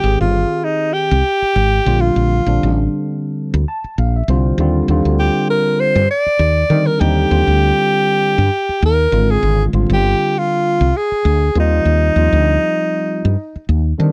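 Electric jazz fusion with a soaring, funky mood and a light sixteenth-note swing, cut from a longer piece and recorded dry and close in a 1970s studio style. A clear, up-front alto saxophone carries the jazz-style solo melody with scooped notes, while a bright, barky tine electric piano, lightly overdriven through a combo amp and coated in lush chorus, comps through major-seventh and ninth chords and slips in a fill from 3.4 to 4.6 seconds. Underneath, a woody fretless electric bass sits dark, round and direct at the front of the mix, with the saxophone dropping out at 13.7 seconds.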